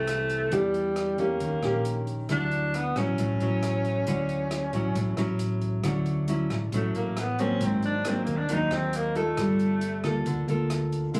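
Captured on a phone in the room with club reverb and compression, this bossa nova excerpt has the close, live feel of a small venue. A breathy tenor saxophone carries the melody with vibrato, subtone and scooped notes, its soft attack giving it a whispered, intimate jazz voice that still sits up front; it moves into a solo at 5.8 seconds and stops at 10.3 seconds. A bright, fingerpicked nylon-string guitar in classical style, also up front, accompanies through chords such as Fmaj7, Em7, Eb7 and Dmaj9, later turning to G#9 and Gm9. A dark, round hollow-body electric bass, fingered and amped, holds the low end. An acoustic jazz kit with hi-hat, rim click and a boomy kick sits low in the mix. The mood is sophisticated and sunny, and the passage is cut from a longer piece.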